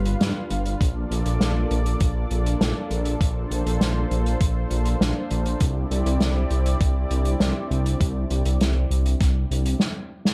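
Dark, lightly reverberant studio sound frames this nostalgic, cinematic synthwave excerpt in straight 4/4, moving from G7 to Bbmaj7 and then to Cadd9 at 5.6 seconds. A lush, warbling pad of detuned sawtooth voices holds slow-attack chords with chorus and sidechain pumping, while a deep, rumbling saw bass with tube saturation sits up front. A roomy soft-mallet kit with a rolled-off top plays hi-hat and snare throughout, a thumpy, tape-toned electronic kick joins at 0.8 seconds, and a drum fill closes the passage at 9.8 seconds.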